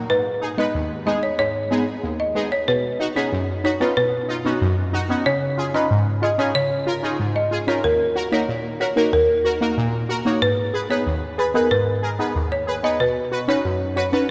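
A hypnotic, tough dancehall excerpt at 93 BPM in straight 4/4, cut from a longer piece and cycling through Abm, Badd9, Dbadd9 and Ebm under a dreamy mix soaked in a wet church reverb. A woody, rustic folk marimba struck with hard mallets carries the melody between Bb4 and Eb5, its dark, percussive tone trailed by tape echo. Beneath it, a brassy, nasal sawtooth synth brass stab with a fast attack and filter sweep sits bright and up front, its detuned sound colored by chorus and phaser, both parts running from 0.1 to 14.3 seconds.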